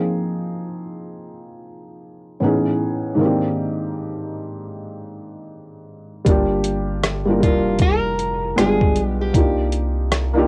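A slow, swung 4/4 groove at 78 BPM, with the 16ths pushed to a 62% shuffle, sets a nostalgic, hazy lo-fi hip hop mood in this short cut from a longer piece. A felt-muted upright piano opens alone, soft, dark and intimate under thick felt, up front and dulled by a low-pass filter and cassette tape, moving through lush chords from Bb9sus4 to Amaj9#11 and Abmaj9#11. At 6.3 seconds the second section arrives with a boom bap sampler-style kit of thumpy kick, hi-hat and rim click, compressed, pitched down and gritty with 12-bit sampler crunch and tape character, sitting prominently in the mix. A deep, round sine sub bass enters at the same moment, its fast attack giving way to long sustained notes beneath the Gm7, G7b9 and Cm11 changes. From 7.4 seconds a small, bright nylon-string guitar adds a fingerpicked melody with fresh strings and an audible finger squeak, softened by its own filter and cassette tone. 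The whole piece sits in a modest booth ambience with a short decay, like a home cassette recording.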